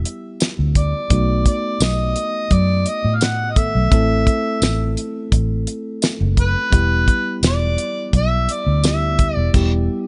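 Brooding and mournful, this short cut from a longer straight-eighth soul blues in E minor moves at 85 BPM, with a tine electric piano playing clean accompaniment through a combo amp over a chord path from Em to B7, Am and back to Em. A vintage muted fingered electric bass sits dark, round and punchy up front, joined by a damped 70s drum kit with a fat snare, tight kick, dark cymbals, hi-hat, crash and tambourine. From 0.8 seconds a mellow harmonica takes a jazz-style solo with scooped notes and overdrive, sounding distant and roomy in a dry mix whose top end is rolled off.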